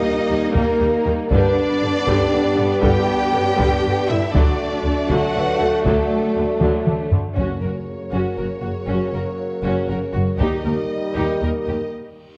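Heard through worn, warbling cassette tape with drifting pitch and a wet scoring-stage reverb, this heroic, triumphant cue from an epic orchestral film score moves in a slow 6/8 at 79 BPM over chords of D#, G, D and F#. Lush, vibrato-rich violins carry the melody and a smooth second line above intense violas, while focused cellos and double basses hold the bass and mellow French horns and clear trombones sustain chords in the background. Close, dry taiko played with heavy sticks drives throughout and fills from 6.6 seconds, articulate timpani sound briefly at 7.4 seconds, and a huge, bright reverse cymbal rises at 12.1 seconds during the closing break.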